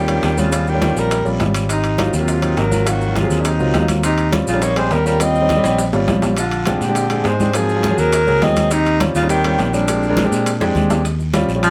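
A band playing live together in one room, with moderate studio reverb, delivers a sunny, sophisticated stretch of Afro-Cuban jazz at a brisk 205 BPM in Eb mixolydian, moving through Eb13, Ab13 and Bb13 chords. A breathy alto saxophone with soft subtone and vibrato carries the melody, while a clear, punchy baritone saxophone adds a forceful second line in the background. An intimate concert grand with audible action noise and long sustain provides accompaniment, a fingered electric bass sits amped and up front, and bright congas, tight high-tuned bongos, grainy maracas, ringing metal-shell timbales and a raspy guiro fill out the percussion, with drum fills at 5.6 and 10.3 seconds.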